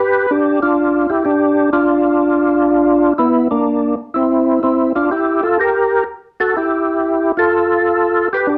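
A percussive tonewheel organ opens this short jazz passage on its own and plays solo throughout, in a swinging, soulful mood with a strong swung eighth-note feel in 4/4. The organ sits up front, warm, full and lightly overdriven, with second-harmonic percussion, chorus vibrato and a slowly turning rotary speaker colouring the sustain. It stays in a fairly compact range between Bb3 and B4. The harmony moves from G7 through a brief chordless moment, then on to Bb, C7 and a diminished chord on E before settling on a bare G5 at 7.5 seconds. A moderate club reverb and a dark, warm production give the roughly 8.6-second fragment, cut from a longer piece, the feel of a club.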